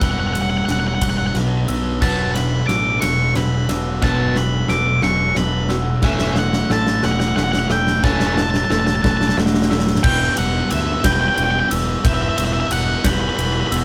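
Heard as a band playing live in one small room, this brooding, cinematic post-rock passage cut from a longer piece moves at 60 BPM in 6/8 in E dorian. A dark octave-fuzz lead guitar carries the melody up front over a thick fuzz guitar riff, a growly overdriven fingered bass, and a huge arena drum kit with a punchy kick and bright cymbals driving a build-up and drum fill through 10.0 s. Alongside them come very quiet arpeggios from a warm clean guitar, soft bell-like glockenspiel arpeggios in the background, and a biting overdriven guitar riff that joins at 2.0 s and drops out at 10.0 s.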